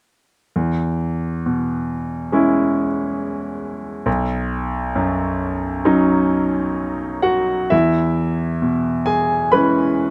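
The rhythm moves freely in a rubato 4/4 at about 67 BPM, giving this short neoclassical minimalist piano passage an unhurried, breathing pulse. A bright concert grand plays solo from 0.6 to 10.1 seconds, ranging from B1 up to B5, with a brilliant tone, a deep bass and a natural, up-front presence. The harmony in E major rests on an E6 chord, shifts to Badd9 at 4.1 seconds, and then returns to E6 as a new section begins. The mood is intimate and tender. A light reverb gives the piano a gentle sense of space, and the clip is taken from a longer piece.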